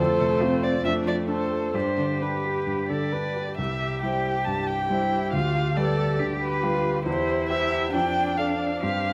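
Restless and dramatic, this quick classical-period movement for piano quartet moves at 137 BPM in 4/4 with a rubato feel, centred in C major and tuned slightly low to A4 = 439 Hz. The muted violin carries the melody up front, its veiled, dark tone coloured by vibrato and heard close, while the muted cello shapes a second line with a soft attack and light vibrato. The clear grand piano, intimate and natural with audible action noise, sits forward with the accompaniment across a span reaching down to C2. Behind it, the muted viola adds a smooth-topped, con sordino accompaniment in the background. All four parts play throughout this cut from a longer piece, with the harmony passing from F and G into C and G7/D after a shift in section at 3.6 seconds. A recital hall reverb with a 1.6-second decay wraps the quartet in a generous, wet space.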